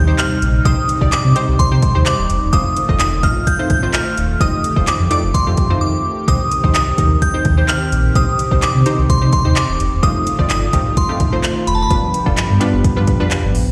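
Dance-pop in C dorian at 128 BPM, this energetic, driving excerpt sets a glassy FM synth bell melody, with chorus, tremolo, digital delay and plate reverb, over punchy, detuned sawtooth chord stabs, a smooth, full-bodied supersaw pumping under sidechain, a deep sine sub bass with octave, and an overdriven electronic R&B kit of soft kick, metallic hats and handclaps entering at 0.2 seconds, all heard through a live venue's PA with recital-hall reverb, moving from Cm to F7 and closing on G7 after a brief break at 5.8 seconds.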